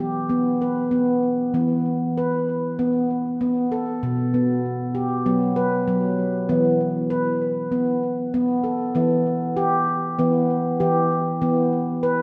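A dreamy, reverb-soaked sound in a lush hall fills this gentle, meditative world excerpt in E minor at 97 BPM with a light sixteenth-note swing, where a solo handpan, bright and ringing with sharp finger strokes on stainless steel and a touch of delay, sits up front from 0.0 to 12.2 seconds, moving over E5 and B5 chords before settling on E minor at 9.0 seconds.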